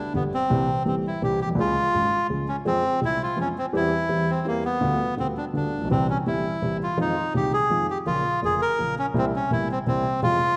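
Drenched in the wet reverb of a scoring stage, this dramatic, sultry tango fragment moves in a rubato 3/4 at 167 BPM, with an up-front, reedy bandoneon carrying the melody over a dark baby grand piano whose mellow, long-sustaining chords run from G through Db and Fm to a closing C7.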